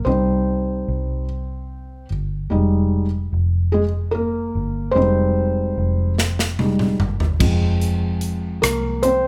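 A six-eight pop ballad with an aching, dramatic mood, this short fragment of a longer piece centres on a felt-muted upright piano playing solo, its thick-felt tone intimate and mellow with audible action noise, over a round, foam-muted fingered electric bass. At 6.2 seconds a modern studio drum kit enters with an airy, polished fill of toms, snare, kick and cymbals that carries into a new section at 7.4 seconds. A moderate recital-hall reverb gives the up-front parts the spacious feel of a church or concert hall.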